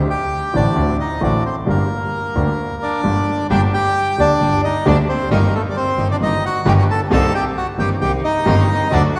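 A reedy, up-front bandoneon carries the melody through this melancholic, tense tango excerpt, phrased with a rubato feel over a present concert grand piano with deep bass and short sustain, and a distant, earthy bowed double bass played by one player with light vibrato. At 3.5 s a biting, intense symphonic string section joins with bowed stabs in the background, as the harmony settles from D7 into G minor before moving through Eb/G and Cm7. The whole ensemble sits in the lush reverb of a concert hall or church.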